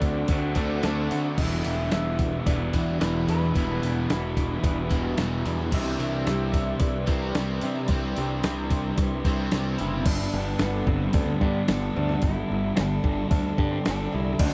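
This shoegaze and dream pop excerpt drifts along at 111 BPM in G major with a blissful, dreamy mood, its mix soaked in a huge ambient reverb. A clean 12-bit drum machine sits up front with a thumpy kick, fat snare and sampler-style tape-warm character, while a bright, growly, punchy electric bass plays directly beneath it. Behind them, a layered wall of guitars builds the riffs: a dark, thick fuzz guitar with lush chorus, a crunchy overdriven guitar trailed by reverse reverb, and a double-tracked, hollow-body semi-hollow guitar with analog chorus that drops out at 10.1 seconds. Floating over this, a lo-fi, slightly broken-up electric guitar through a small old amp carries the melody, compressed and bathed in diffuse ambient delay. A very quiet twelve-string acoustic adds shimmering, octave-doubled arpeggios with a boxy edge as the chords move from D7 through Em9 and Cmaj9 before settling on Gadd9 at 10.1 seconds.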